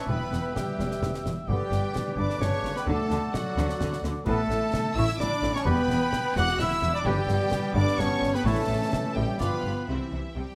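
Heroic adventure film score in a soaring, adventurous mood, moving at 129 BPM in 3/4 in A mixolydian, with a lush, distant symphonic violin section carrying the melody over a second violin line, a mellow clarinet, a cor anglais and an airy, hollow flute. Viola accompaniment, sustained chords from a loose French horn section and a tight trombone section, distant roomy trumpet stabs, and a smooth, even bass of cellos and double basses fill out the orchestra, while close, dry concert bass drum, snare and bright clash cymbals supply the percussion. The harmony cycles through Em, G, D and Asus2 before turning through A and G7 to land on C near 9.9 seconds, all set in a moderate scoring-stage reverb.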